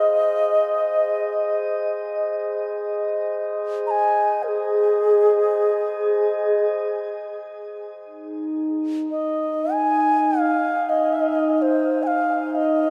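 World meditative music in free time and Ab major pentatonic, this calm, peaceful passage cut from a longer piece sets a bright, reedy low xiao melody, close and up front with vibrato and tongued notes, over a glassy, ethereal glass harmonica texture with slow, smooth attacks, both bathed in shimmer reverb and carried into a vast, echoing cathedral space.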